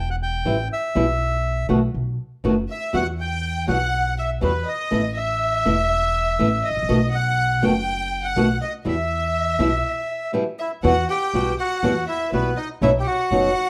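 A reedy, bright bandoneon carries the melody over a woody, thumpy pizzicato upright bass in this dramatic, melancholic tango fragment, with a rubato feel and a fingerpicked flamenco guitar entering at 0.5 seconds, finger squeaks audible. From 2.7 seconds a rich studio violin section adds an expressive bowed second line with vibrato, sitting close beneath the up-front bandoneon, bass and guitar. A brief break at 9.8 seconds leads into a return of the opening theme, all in a light reverb.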